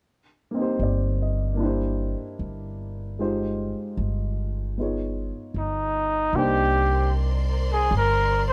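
Close, detailed microphones and a light reverb give this short jazz ballad cut an intimate, smoky air, moving at 76 BPM in 4/4 with a swung eighth-note feel in C minor. A natural-sounding baby grand piano opens the accompaniment at 0.5 seconds, joined almost at once by a pizzicato upright bass on gut strings with a woody, thumpy tone, both placed up front. The harmony moves from Cm7 through C7 and Fm7 to Db9 before settling on Cm9. At 5.6 seconds a breathy, mellow trumpet takes the solo melody, its soft attack, vibrato and scooped notes carrying a vintage jazz character. A lush, bowed symphonic string section enters softly above it at 6.3 seconds, adding expressive sustained chords in a higher register as the passage turns into a new section.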